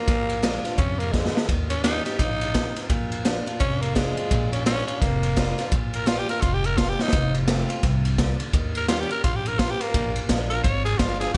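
A small, lightly reverberant room frames this rowdy, retro rockabilly excerpt, its top end rolled off, as a growling, raspy tenor saxophone solos up front over a swinging 170 BPM groove in Bb mixolydian, moving through Bb7, Eb7 and F7. A saturated garage drum kit pumps with a punchy kick, medium-tuned snare and ride cymbal, dropping fills at 1.1 and 7.0 seconds, while a thumpy, woody pizzicato upright bass anchors the low end. A boxy, picked parlour acoustic guitar sits in the background.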